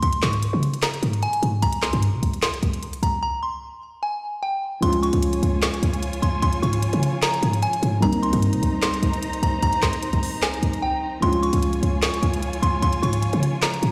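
Hip hop in a trap style, this eerie, dark excerpt moves at 150 BPM in 4/4 with a half-time feel. From the start, a delicate, tinkling synth tine bell with a vintage FM character carries the melody, its warbling tone coloured by chorus and delay. Beneath it sits a short, punchy 808-style bass with a tight sine body, a noise layer and a fast, decaying attack placed up front. An electronic trap kit of handclaps, crisp hi-hats and a woody snare drives the groove, with breaks at 3.2 seconds and again later. At 4.8 seconds a dark, mellow concert grand piano with a boxy, deep low end joins as accompaniment, while a distant, lush symphonic string section holds bowed chords with vibrato, soft attacks and expressive portamento. The sound carries light reverb and small-room ambience, as if played on a big sound system in a bare room with a large studio reverb.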